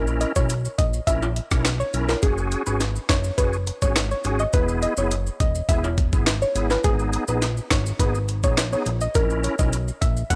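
A dry, gritty recording with transformer saturation frames this hypnotic, bouncy dancehall cut, taken from a longer piece and moving at 104 BPM in a straight 4/4 over chords of A#dim, F#sus2, E and G#m. A fat, detuned analog bass with a filter pluck and a dark, sustained low end sits up front from the start, bright, compressed maracas and timbales played with soft hands come in at 0.1 seconds, and a compressed, pitched-up jungle sampler-style drum kit with a thumpy kick, high-tuned snare, hi-hat and rim click enters up front at 0.2 seconds. Above them a soft, round pluck carries the melody through chorus and tape echo, and a reedy tonewheel organ with key click and fast rotary speaker supplies the accompaniment.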